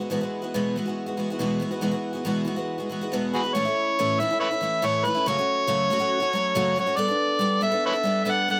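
A light reverb gives this short excerpt of rock a sense of space, with both the guitar and harmonica placed up front. At 140 BPM in a straight 4/4, a picked twelve-string acoustic guitar opens alone, its bright, shimmering, octave-doubled tone ringing over an Eadd9 chord. At 3.3 seconds an amplified, overdriven harmonica joins with the melody, warm yet gritty and lightly vibrato-laden, using tongue slaps and scooped notes in a pop-style solo. From 3.5 seconds the music settles into A mixolydian, moving through A, F#m and Gadd9 as the guitar keeps up its accompaniment. The mood is hopeful and open-road, and both parts carry on together until the cut at 8.6 seconds.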